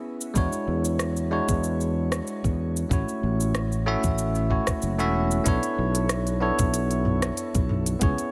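A bright, bell-like tine electric piano opens this smooth sunset chillout excerpt at 0.0 seconds, up front with tape echo, shimmer reverb and a filter sweep that runs until 5.5 seconds, voicing E13 and A6 chords before settling on Bm11 in B dorian. Within the first half second a layered deep house kit of smooth hats, rim click, shaker and toms joins a gritty, thumpy sampler-style kick, setting a relaxed 94 BPM groove in 4/4 with a light swing on the 16ths. A growly fretless electric bass sits close alongside them, warm and sustaining in its low register, all framed by light reverb and digital ambience.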